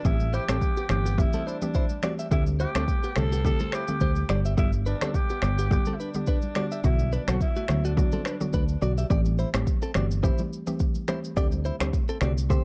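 Dark, lightly reverberant production frames this smooth, hypnotic afrobeats groove, where a raspy, distant alto saxophone with delay carries the melody until 8.5 s over a woody, chorused synth pluck, a punchy fingered electric bass, a deep house kit of snaps, kick, rim clicks and shaker, a bright, clean delayed electric guitar riff and faint ringing congas.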